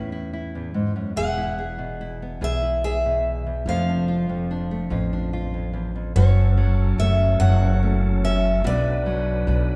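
Acoustic folk in a slow, straight 6/8 at 48 BPM, pastoral and nostalgic, cut from a longer piece. A boxy, old-stringed archtop guitar picks the melody over up-front fingerpicked nylon-string classical guitar with audible finger squeak, while a dark, woody pizzicato upright bass anchors the low end through the Aadd9, E and Dm/F changes. At 6.2 s a reedy, lightly overdriven tonewheel organ with key click and slow rotary speaker adds sustained chords over F#m and Bm, all set in the lush reverb of a church or concert hall.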